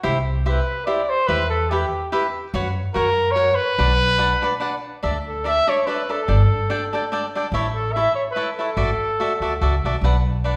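A lilting 3/4 pulse at 144 BPM with swung eighths drives this festive, proud mariachi passage, cut from a longer piece. Crisp, picked acoustic cavaquinho accompaniment and a woody pizzicato upright bass carry the harmony from B minor into D major at 5.0 s. A mellow, classical-style solo trumpet enters at 0.5 s to sing the melody, all framed by the lush reverberation of a recital hall.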